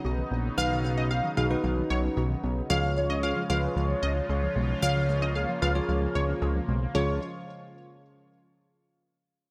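A sweeping, resonant pad, a soft round pluck sitting in the background and a fat, thick analog bass up front open this bright, wistful synth-pop excerpt at 113 BPM in Db mixolydian, with a punchy, funky polysynth comp and a bell-like, clean tine electric piano joining at 0.6 seconds, and a velvety synth lead with vibrato carrying the melody from 3.0 seconds over a move from Cbadd9 to Db in a light reverb.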